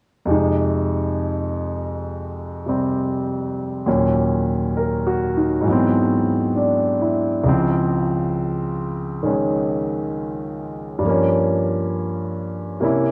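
Cool and swinging, this short excerpt of solo jazz features a concert grand piano playing alone from 0.3 to 13.1 seconds, its natural tone sitting up front with a deep bass. The harmony moves through minor seventh chords, an altered dominant and a major seventh before settling on a half-diminished chord near 11.0 seconds. A moderate studio reverb surrounds the piano, and the sound carries the worn, warbling character of old cassette tape with a warbly pitch drift.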